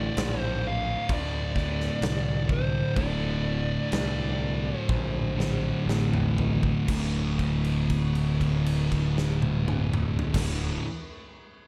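A fuzz-soaked lead guitar with digital delay carries the melody for the first 5.8 seconds of this sludgy, ominous stoner and doom metal excerpt at roughly 59-65 BPM. It is set over two thick, dark fuzz guitars grinding out a low riff in the background, a bright, growling overdriven bass with tube saturation, and a big acoustic drum kit with a punchy kick and bright cymbals in a stone room. As the music slows down, the kit plays a drum fill from 4.9 seconds, and a held note follows from 6.9 seconds, all within a dark, small-room production.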